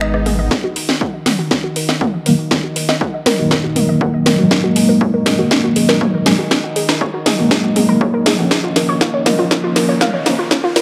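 Opening on a faint electronic swell, a warbly, dusty pluck arpeggio, fat chorused synth-brass stabs, a brief round analog bass note and a techno kit of cracking snare, metallic hats, rim clicks, finger snaps and toms launch this hypnotic, melancholic melodic techno piece at 120 BPM in Eb minor, with a punchy electronic kick entering at 0.5 s, an evolving analog drone sitting in the background, filter sweeps driving the build-up on the pluck and brass, sidechain pumping, a quiet riser arriving at 9.6 s, and a drenching spring reverb soaking the echo-heavy mix.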